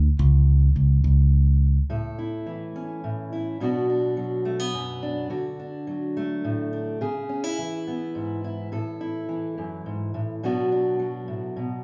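Anthemic and uplifting, this indie folk excerpt in A major moves in a straight 6/8 at 70 BPM, opening with a punchy, direct fingered electric bass that sounds alone until 1.8 seconds, after which an up-front fingerpicked steel-string acoustic guitar with an auditorium tone carries the building arrangement through A, Bm, D, C#m7, A5 and back to Bm, all set in a generous studio reverb that places the band live together in one large room.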